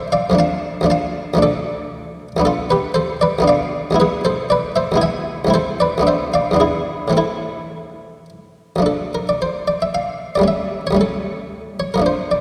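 Solemn and flowing, this short fragment of a longer piece is a baroque-style suite movement for solo harpsichord in 3/4, moving at roughly 105 to 119 BPM with a supple, rubato feel. The harpsichord plays with its buff stop engaged, giving a muted, lute-like pluck in the Flemish manner, close-miked and up front, with a full body spanning C2 to A5. It sits in a wet church acoustic whose long reverb, about 2.7 seconds, surrounds the instrument. The harmony begins in A minor, passing through half-diminished and dominant-seventh chords before settling on A minor at 7.1 s. At 8.8 s the music turns toward D minor and repeats its opening material, closing on an A7 over D as the fragment ends at 12.4 s.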